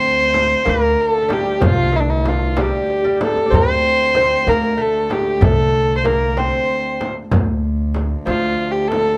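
In a moderate studio room, this brief, melancholic and hypnotic cut from a Persian modal ensemble moves in 6/8 at 63 BPM in dastgah shur on D, with an up-front, biting kamancheh bowing the melody with light vibrato and portamento, a bright, fingerpicked gut-string lute playing a delicate second line, a woody pizzicato upright bass that stops at 8.5 s, a pure, floating sul tasto cello holding a D drone, a deep, close and dry tombak in the background, and a small, bright frame drum played with soft hands that enters at 0.3 s, with a drum fill at 2.9 s.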